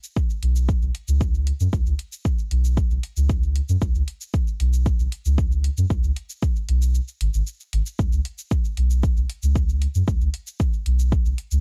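Meditative and cavernous, this short dub techno fragment moves in a steady, straight 4/4 pulse. An electronic kick drum sits up front, deep and layered, while dark, produced electronic shaker and hi-hat patterns sit far back in the mix. A soft dub sub bass carries the low end, round and sustained, with a fast attack, a tone blending triangle and square waves, and a sidechain pumping that ties its breathing to the beat. The material repeats as a single section, interrupted by a brief break from 6.9 to 8.0 seconds before the groove resumes. The sound is dry and gritty, with little reverb, giving the low frequencies a close, tactile weight.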